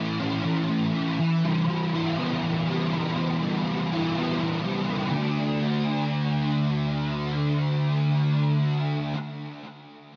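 A moderate, lush hall reverb wraps this short, dreamy rock fragment, which is cut from a longer piece. A single thick fuzz guitar carries it alone, electric and dark, double-tracked and placed up front. Its picked, distorted tone is thickened by ensemble chorus and trailed by digital delay, giving a blissful, floating haze over a straight 4/4 feel. The guitar moves from A to Em at 1.2 s, then shifts into a second section on a D5 power chord at 5.1 s. Its range spans A2 to E4, and it stops at 9.2 s.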